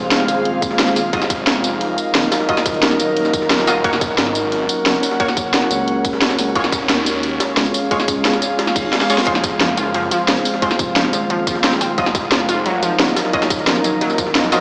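A cracking, up-front drum and bass kit drives this mechanical, futuristic slice of dark technical drum and bass at 177 BPM, layered with a tight electronic kick and a gritty, pitched-up jungle sampler kit sitting back in a large room. A nasal vowel-sweep wobble bass and a swirling, saturated phased saw bass carry the low end beneath a deep, moody ambient pad, an airy breathy pad with sidechain pumping, and bold orchestra-hit-like stabs with tape echo over chords moving from Fm through Ebmadd9, Gb and Db. A reverse cymbal and drum fill around 9 seconds lead into a lush, bright unison pluck arpeggio with 12-bit sampler grit from 9.3 seconds, all heard as if through a big system in a bare room.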